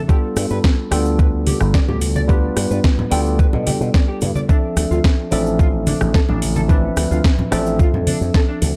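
Nu-disco with a cosmic, sleek mood, this short cut from a longer piece rides a thumpy, up-front electronic kick and a layered house kit with a cracking snare, metallic hats and rim clicks, while bright cabasa and hard-hand congas sit in the background. A growly, punchy slap bass with an envelope filter pushes forward, as a clean tine electric piano through a combo amp carries the accompaniment with sidechain pumping and dub echo, moving from G7 to Dm7 at 4.5 seconds. A dark, slightly broken-up electric guitar plays a fingered riff with subtle chorus and dub echo, all in a dry, dark production.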